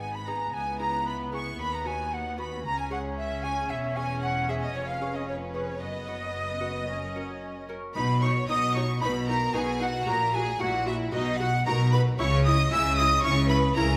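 Classical baroque-style concerto movement in B major at 114 BPM, festive and brilliant, this excerpt from a longer piece sets an airy, distant flute leading alongside a vibrato-rich violin section, with a second smooth-topped violin line, a bright fingerpicked gut-strung lute and a lush viola section filling the middle, and focused cellos and close, expressive double basses anchoring the bass in a moderate recital-hall reverb as the music moves from its opening passage into a new section at 8.0 seconds.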